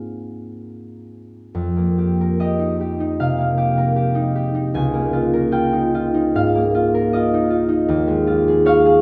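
Dreamy and graceful, this brief excerpt from a longer classical piece features a solo concert harp, thumb-plucked and ringing up front from low Db2 to high Bb5, drifting in F minor at a rubato 64-78 BPM in 4/4 through lush Ab69, Fm11, Db69 and Eb9sus4 harmonies, bathed in a wet church reverb.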